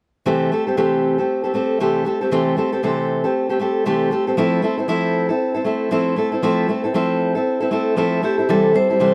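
A fingerpicked steel-string acoustic guitar opens the recording at 0.3 seconds, warm and up front with an auditorium-like body, laying down a sunny, heartfelt pop accompaniment in 4/4 at 117 BPM. The sixteenth notes carry a gentle swing, giving the picking a relaxed, easy lilt. The harmony rests on C6, moves to Fmaj7 at 4.4 seconds, and returns to C6 at 8.5 seconds. Just before that return, at 8.2 seconds, a vibraphone played with medium hard mallets enters with a brief melody, its metallic, ringing tone shaped by a slow motor vibrato and a boxy small-room character. The overall sound is close and detailed, with little reverb, and the passage is cut from a longer piece, ending at 9.1 seconds.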